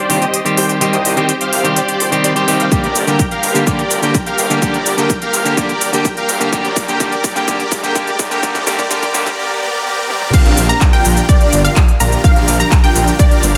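Anthemic and powerful, this festival progressive house cut at 126 BPM builds over a huge, thick supersaw riff pumping with sidechain, a bright, picked clean electric guitar carrying vintage sampler grit, a chorused detuned saw bass sitting in the background, and a crisp, overdriven big-room drum kit with claps, shaker, toms and crash, while a punchy layered kick joins at 2.7 seconds and a very quiet riser enters at 5.9 seconds and runs until the drop at 10.3 seconds, where a wave-folded unison pluck arpeggio arrives over a Cm, Gm, Eb to Bb6 progression, all bathed in a lush hall reverb.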